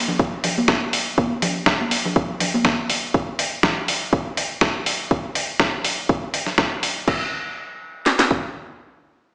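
Nu-disco with a sensual, cosmic mood, this short cut opens on ringing, hard-handed congas that stop at 2.6 s, while an up-front electronic house kit with a punchy kick and cracking snare runs alongside a gritty, compressed sampler-style soul kit of crash, hi-hat and medium-tuned snare, all washed in plate reverb and heard as if played over a big sound system in a bare stone room, with a small-speaker sound.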